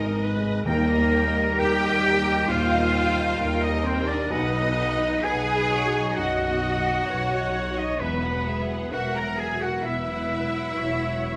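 Heard in a moderate recital-hall reverb with lossy compression artefacts, this short cinematic passage from a longer piece unfolds in a tender, moving rubato over Abm, Eb, B and Esus2 chords. A distant studio violin section carries a smooth, even melody in the background, while a clear, roomy oboe, a very quiet clarinet with a soft attack and an intense symphonic violin section play second lines. Beneath them sit a felt-muted, intimate upright piano, a focused viola section, a tight French horn section holding sustained chords in the background, a close, lush cello section and a rich double bass section underpinning the bass.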